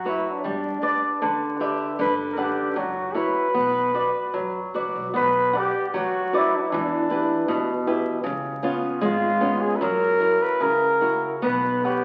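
Fado-style ballad, longing and mournful, moving in a loose rubato as a warm flugelhorn carries the solo melody up front in a jazz style, with light vibrato and scooped notes. Close beside it a fingerpicked acoustic flamenco guitar accompanies throughout, a nylon-string guitar fill arrives from 0.8 to 2.0 seconds, and a woody, growly pizzicato upright bass sits in the background. The whole passage, cut from a longer piece, sounds like a very old 78 rpm record with vinyl crackle, bathed in a large, wet studio reverb.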